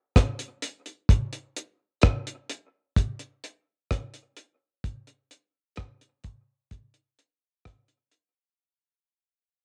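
Deep and meditative, this short reggae passage is cut from a longer piece and moves at a slow 64 BPM in a straight 4/4 feel. A deep acoustic reggae drum kit carries it alone, entering at 0.2 seconds and stopping at 8.3 seconds, with hi-hat, kick drum and rim click. The kit sits up front and sounds dry and dark, with a tight kick, a rolled-off top end and a warm, smooth character. A cassette tape coloring on the drums fits the home cassette recording, and the room adds little reverb. The whole passage plays under a fade-out that runs from start to finish.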